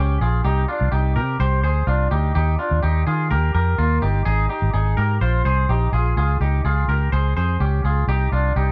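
A twangy, compressed electric guitar plays arpeggios through lush chorus and tape echo alongside a round, foam-muted fingered electric bass, both up front from the very start of this short, youthful and nostalgic cut of jangly indie pop at 126 BPM in 4/4. The chords move from Cmadd9 through Eb, Ab5 and Bbsus4, and a new section begins at 6.2 seconds on Db before returning to Cmadd9 at 8.1 seconds. The production is dark and warm, with light reverb.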